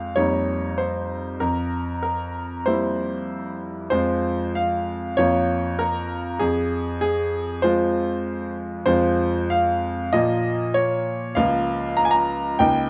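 A rubato 4/4 pulse around 97 BPM carries this elegant, graceful classical-period piano sonatina in F minor, a 12.9-second passage cut from a longer piece. A bright grand piano plays alone throughout, spanning Db2 to Bb5 with a brilliant, vintage tone, smooth long sustain and an up-front presence, moving through harmonies such as C7/F, Fm and Bbm. A moderate large-studio reverb gives the piano a sense of space.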